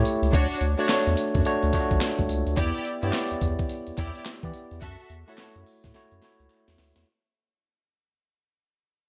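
A tine electric piano sits up front with a clean tone, carrying the chords of this confident, bouncy new jack swing groove and slipping in a short fill between 1.7 and 2.6 seconds. Beneath it, a round analog bass stays deep and dark, while a gritty, sampler-style breakbeat kit with a thumpy kick, medium-tuned snare, hi-hat, tambourine and handclaps drives the swung sixteenths, ending in a drum fill from 5.9 seconds. A muted string section adds veiled, bowed stabs with vibrato and a touch of delay, sitting lower in the mix and dropping out at 5.5 seconds. Very quiet group handclaps, crisp and distant as if in a large room, float behind the kit. The harmony moves from Dmaj7 to Em7 to F#m7 over a digital ambience, and the whole passage fades out as it is cut from a longer piece.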